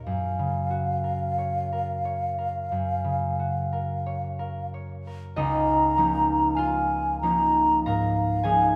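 Rubato and unhurried in 4/4 at roughly 44-54 BPM, this dreamy, pastoral impressionist classical duo in Db major pairs an airy, hollow concert flute, carrying the melody between F5 and Bb5 with vibrato and tongued articulation, with a fingerpicked concert harp whose ringing accompaniment spans Db2 to Bb5. Both sit up front throughout the 8.8-second passage, cut from a longer piece, and the harmony settles from Gbmaj7 onto Db69 at 5.4 seconds as the opening phrase returns. A wet scoring-stage reverb lends the pair a soft, spacious glow.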